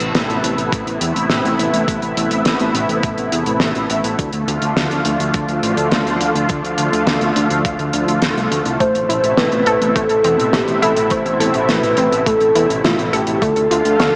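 A velvety, mellow synth lead with chorus, digital delay and shimmer reverb enters at 8.8 seconds, alongside a round analog pluck playing arpeggios in the background, to crown this driving, moody synthwave excerpt, where a silky, detuned analog string pad holds up-front sustained chords with sidechain pumping, a fat, thick analog bass pumps beneath, and a dry damped 70s drum kit with a fat snare and gated reverb sits beside a thumpy electronic kick, the mix carrying a lush hall reverb and a small speaker sound.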